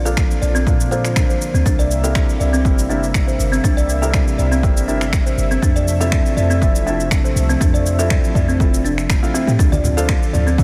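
A punchy, overdriven electronic kick sits up front in this earthy, hypnotic afro house excerpt, layered with overdriven electronic shaker and finger snaps that share its studio reverb. Beneath it, a deep, boomy 808-style bass with a sine body, a noise layer and tube saturation pumps with the sidechain, as does a detuned sawtooth pad whose chorus and vintage 12-bit sampler grit hold sustained chords through Bbmaj7, C7, Fmaj7 and Dm7. A woody kalimba with a hollow-box, thumbnail-plucked tone spins short arpeggios through delay. A felt-muted upright piano with audible action noise adds soft, intimate stabs, shaped by a low-pass filter sweep and delay. Low-tuned congas with a thick skin, played with soft hands in a small room, enter only at 9.7 seconds and stay in the background, all over a light 16th-note swing.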